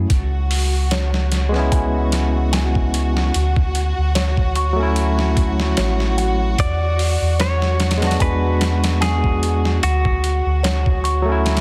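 Trip hop at 74 BPM with a smoky, melancholic feel, this excerpt sets a barky tine electric piano with harmonic tremolo and tape echo over a round, deep dub sub bass and a gritty, pitched-down boom bap sampler-style drum kit with a thumpy kick, while a dark, bowed violin section holds soft sustained chords, a delicate, tinkling music box with 12-bit sampler grit weaves arpeggios in the background, and a twangy, direct-recorded clean electric guitar with dub echo takes the melody from 6.6 seconds over the E7 and Dmaj7 that close the C#m7, Dmaj7, E7, Dmaj7 progression.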